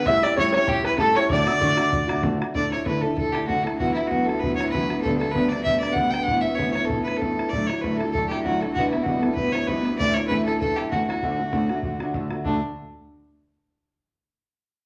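Cheerful and rollicking, this Celtic folk reel at 194 BPM in D major, cut from a longer piece, puts a biting, earthy bowed fiddle melody up front over dark, boxy fingerpicked steel-string guitar with finger squeak and a boomy, close bodhran, while an airy, hollow wooden whistle with chiff and a twangy, plunky open-back banjo add brief second lines that stop at 2.2 s, and a clear, focused bowed cello holds a low D drone in the background from 2.5 s, inside a large, wet studio reverb.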